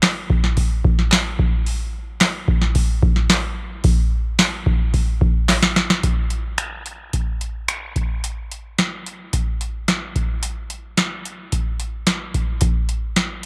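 A booming analog drum machine and a saturated, compressed group handclap open this driving, sunny rock excerpt at 110 BPM in a straight 4/4. Up front, the machine plays finger snaps, metallic hi-hat, a deep kick and a crisp snare with a tape-warm, small-room character, while the human claps sit in the background until 5.6 seconds. A drum fill at 5.5 seconds leads into a new section at 6.0 seconds, where the drum machine carries on by itself under light reverb.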